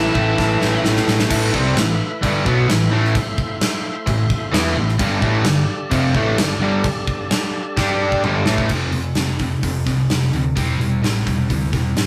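A heavy, aggressive hard rock excerpt in A minor at 130 BPM opens with a brief burst from two lead guitars: a nasal, overdriven line with a parked wah carrying the melody, and an octave-fuzz guitar adding a second line, both gone by 0.8 seconds. Beneath them, three guitars drive the riff together: a double-tracked semi-hollow guitar with a bright overdriven edge sits forward, while a high-gain distorted guitar and a sludgy, dark one sit further back. A growly, punchy picked bass anchors the low end, and a thick, gritty tonewheel organ holds sustained chords through a slow rotary speaker in the background until it and the semi-hollow guitar stop at 8.7 seconds. An up-front gated 80s drum kit joins at 0.2 seconds with a tight kick, medium-tuned snare and airy, polished room sound, adding drum fills along the way. The harmony moves from A minor through G and F to C over E. It all has the feel of a rough rehearsal-room recording, with warm saturation and a moderate stone-room reverb.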